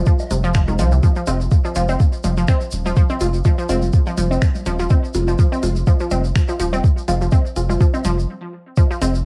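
A cassette-recorded home production with a moderate studio reverb gives this short cut from a longer minimal techno piece its cool, clinical character, set at 124 BPM in 4/4 with a 55% swing on the sixteenths in F minor. A deep, thick, saturated sub bass sits up front from the very start, pumping against the sidechain as it moves between Eb1 and C2, while a soft, tape-warm electronic kick drum holds the center of the beat. A juicy, squelchy blip pluck carries the riff between C3 and C4, its resonant, detuned sawtooth tone thickened by chorus and trailed by tape echo, and from 0.7 seconds a muted, filtered dub chord stab adds short phased chords between Ab3 and F4 with analog delay. Around them, a minimal click drum kit supplies finger snaps and clicky hi-hats, a grainy tube shaker adds a bright, compressed shimmer, and woodblock and congas echo faintly in the background as if heard in a large room. 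The groove breaks for a brief stop between 8.3 and 8.8 seconds before the excerpt ends.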